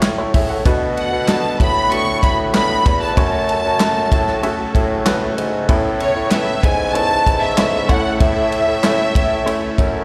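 This excerpt sounds like a live gig heard through a venue's PA, with light recital-hall reverb giving the room a gentle glow. It's anthemic, hopeful piano-driven pop in A major at 95 BPM in a straight 4/4, with chords moving from F#m through Bm7 and back to F#m before settling on Aadd9 and A. A bright, woody upright piano carries the accompaniment from A2 to F#5, slightly detuned with audible action noise and a slapback echo. Beneath it, a bassoon with light vibrato and a soft attack takes the bass line up front, while a smooth-topped studio string section holds sustained chords in the background. A natural country drum kit with a punchy kick, medium-tuned snare, hi-hat, ride cymbal and handclaps drives the groove from the start. At 1.0 seconds a lush, biting violin section enters with the melody between C#5 and C#6, its bowed vibrato sitting up front with slapback echo and delay.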